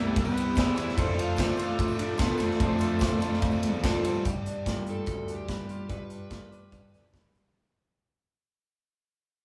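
A dark, smooth lead guitar with overdrive carries the melody from the start of this wistful yet upbeat indie rock piece at 146 BPM, over a clean, twangy guitar riff with phaser, a crunchy overdriven guitar riff in the background and a round, punchy fuzz bass, with a distant trumpet line with vibrato and shimmering vintage string-machine violins sitting very quiet beneath, moving between Cmaj7 and F6. A big acoustic rock kit with a boomy kick sits up front, joined by a very quiet, jingly tambourine, the band playing together in one room with moderate studio reverb. By 4.2 seconds the trumpet, strings, crunchy guitar and tambourine have dropped away as the harmony settles on G7, and the remaining parts fade out.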